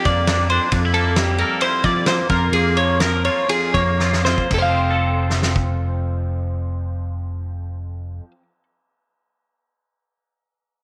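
A compressed, up-front twelve-string electric guitar carries this short fragment of playful, wistful math rock and midwest emo, picking clean arpeggios between G4 and F5. Alongside it, a twangy electric guitar plays fingered accompaniment through analog chorus, while a growly, round picked electric bass anchors the low end close in the mix. A loose indie drum kit sounds distant and roomy, with dark cymbals, a fat snare and a punchy kick; it plays a fill at 4.0 seconds and drops out at 5.7 seconds. In straight 4/4 and F major, the tempo ranges from 114 to 135 BPM, slowing from 0.7 seconds to the close of the opening section as the chords move from Gm7/F through C7/F and Db6/F before arriving on F at 4.5 seconds. Light small-room reverb gives the recording an intimate, lived-in space.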